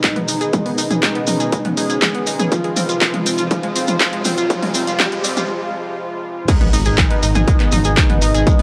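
A heavy, tape-warm electronic kick and an overdriven analog drum machine with handclaps, hi-hats, toms and crash cymbal open this cinematic, melancholic melodic techno excerpt at 121 BPM, together with grainy maracas, a fat detuned lead with phaser, chorus and tape echo, a warbling chorused pluck arpeggio, a smooth wave-folded pad in the background and a very quiet, blurred granular cloud pad, all moving between G#m and Fm. A dark, rumbling saw bass enters at 0.2 seconds and a very quiet riser arrives at 0.6 seconds, building through a short break into the drop at 6.5 seconds, where an impact lands and the harmony returns to G#m. The sound is dry, gritty and cassette-tinged, with sidechain pumping on the melodic parts and light digital ambience.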